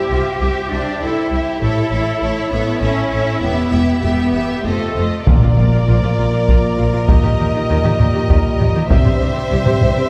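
Majestic and heroic, this epic orchestral film-score passage in a straight 3/4 at 99 BPM opens with lush bowed strings, a warm violin melody over a clear, focused second violin line, rich violas, cellos and up-front double basses, before settling into Bb major at 5.3 s, where mellow French horns and warm trombones add sustained chords, a mellow vintage trumpet adds stabs, heavy-stick taiko drums and a round soft-mallet timpani hit drive in, and a huge, bright but very quiet impact lands, all heard from further back in a wet scoring-stage reverb.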